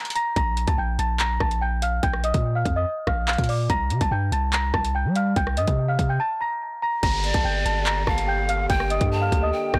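A blown-out, overdriven recording in a small room sets this tense, menacing drill excerpt in G minor at 144 BPM with a half-time feel, where a delicate, bell-like celesta melody with hard felt hammers sits up front over an electronic drill kit of hard-clipped kick, metallic hi-hats, handclaps, rim clicks and crash. A deep, sine-toned 808-style bass with a fast attack and long decay joins at 0.4 seconds. At 7.0 seconds a distant, roomy French horn section adds mellow sustained chords with light vibrato alongside an electronic downlifter, and at 7.2 seconds a breathy, bright bamboo pan flute with chiff, vibrato and an unsteady tone enters through a digital delay.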